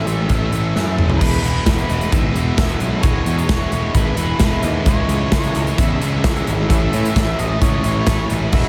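A small room ambience and light reverb frame this hazy, wistful slice of shoegaze-tinged dream pop rock, cut from a longer piece and moving at 131 BPM in E major over an A, E, C#m, A progression. Up front, a double-tracked overdriven electric guitar plays a riff with subtle chorus, while a round, punchy fuzz bass adds overdrive underneath and a dark octave-fuzz lead guitar carries the melody with distortion and analog delay in the background. A big acoustic rock kit with bright cymbals and a punchy kick drives the track, its drum fill at 0.8 seconds leading into the second section at 1.2 seconds.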